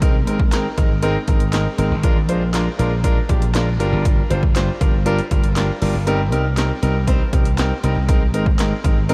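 Driving and energetic, this dance-pop excerpt moves at 119 BPM in C minor, with a punchy analog drum machine of kick, snare, hi-hat and handclaps sitting up front with a tape-warm edge and a short room on the snare, clap and hats. A bright, growly slap bass and a clear, smooth vintage concert grand piano both pump with sidechain against the beat, cycling through Abadd9, Bb7, Gm7 and Cm7. The kick drops out briefly from 6.1 to 6.6 seconds, and the whole track carries light digital ambience and a layer of vinyl crackle.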